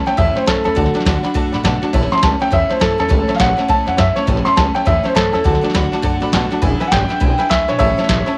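Swung eighths drive this rowdy, retro rockabilly snippet in a brisk 4/4, with a soft vintage rhythm box up front supplying a deep kick, tonal snare and metallic hi-hat beneath a thumpy, gut-strung pizzicato upright bass. A clear, woody upright piano carries the melody, and a honky-tonk piano fill lands from 1.3 to 1.9 seconds, while a full-bodied picked dreadnought acoustic guitar, finger squeaks included, and a jangly, short-sustained tack piano fill out the accompaniment. The progression moves from A through D and E7 before settling back home, all wrapped in light reverb and a small-room ambience.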